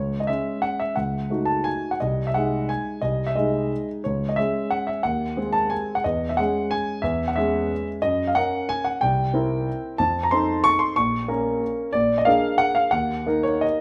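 Elegant and graceful, this fragment of a classical piano waltz moves in a rubato 3/4 at 159-196 BPM, opening in C# minor before turning toward Bb minor at 8.0 s. A solo concert grand carries it alone, sounding intimate and up front, with deep bass, natural tone and audible action noise. A moderate stone-room reverb surrounds the instrument.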